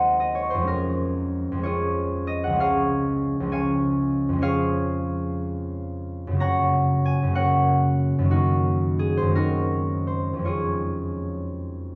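A classical solo harp piece in Db major, graceful and dreamy, moving in a flexible 6/8 with rubato at roughly 51-68 BPM counted in dotted quarters. The concert harp plays alone throughout the 12-second passage, a short cut from a longer work. It sits up front, with a thumb-plucked, ringing tone spanning Db2 to Bb5. The harmony opens on Ab7/Eb, settles onto Db/F and Db, moves to Gb around 6.4 seconds, then passes through Ebm/Gb and Ab7/Gb before returning to Db/F at 10.4 seconds. A moderate recital hall reverb surrounds the instrument, and the production leans dark and warm.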